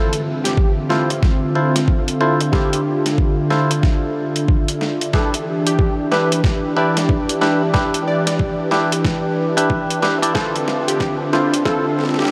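A compressed boom bap sampler-style kit of hi-hat, rim click and medium-tuned snare opens this gritty, swaggering glitch hop excerpt at 92 BPM, swung on the 16ths in 4/4 and re-recorded in a small room. A thumpy, overdriven electronic kick soon joins it, sitting up front. In D dorian, a smooth, detuned analog pad pumps with sidechain as its sustained chords move from Dm7 to Em7 at 5.1 s and back to Dm7 at 10.4 s. Meanwhile a twangy clav plays stabs through analog delay, a punchy, catchy unison lead carries the melody through lush chorus, and a warbling, nostalgic tape-like pad hums in the background, all building up under a drum fill and soaked in a huge, dreamy reverb.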